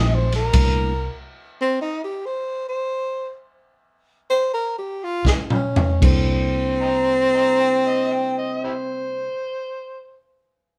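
A swung shuffle in four, this laid-back, soulful electric blues excerpt opens with the band together before a stop at 0.5 seconds, as the tempo gradually slows and the breathy tenor saxophone carries the melody up front with a dark subtone, vibrato and a soft, whispered attack. The crunchy breakbeat drum kit returns with a fill at 5.2 seconds, its gritty, saturated sound marked by dark cymbals, a tight kick and a rolled-off top, while the vintage muted fingered electric bass comes back round and punchy alongside it. At 6.0 seconds the reedy electric piano re-enters as accompaniment, lightly overdriven and colored by phaser. An amplified, overdriven harmonica then adds a second line in a jazz style, with scooped notes, tongue slaps and light vibrato. The band sounds live in one room, and a moderate large studio reverb gives the whole a roomy, natural depth.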